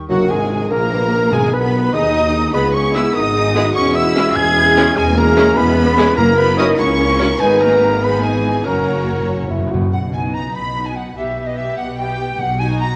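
Heard through a wet scoring-stage reverb and worn, warbling old cassette tape, this cut from a fast, dramatic yet cheerful romantic orchestral movement in 6/8 opens on a band accent touched by a very quiet, bright tam-tam. Lush, vibrato-laden violins carry the melody with a pure silver flute as a second line. A richer second violin group, a mellow clarinet and a distant cor anglais add further lines, while a dark bassoon joins shadowy violas in the accompaniment over soft French horn chords and a bass of woody double basses, expressive cellos and a roomy tuba. Calf-head timpani strike at 1.3 s and return at 6.2 s, filling the close of the opening section before winds, horns and tuba fall away between 9.3 and 9.9 s, leaving strings, flute and timpani to finish the phrase.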